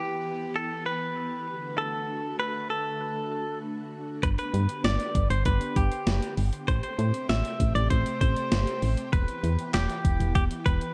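Nostalgic and bright, this synth-pop excerpt moves at 98 BPM in a straight 4/4 in G major, cut from a longer piece. A clean, twangy electric guitar, recorded direct and sitting up front, carries the melody through an analog delay, while a phased string machine fills in swirling, full-bodied sustained chords coloured by ensemble chorus. At 4.2 seconds a punchy, round FM bass arrives alongside a gated 80s digital drum machine with a thumpy kick, hi-hat, handclaps and a snare soaked in gated reverb, giving the groove a tape-flavoured, sampler-style character. The harmony moves from Em through D to G, then Am7, before returning to Em near the close. Light reverb and an echo-heavy mix keep the whole short passage airy and retro.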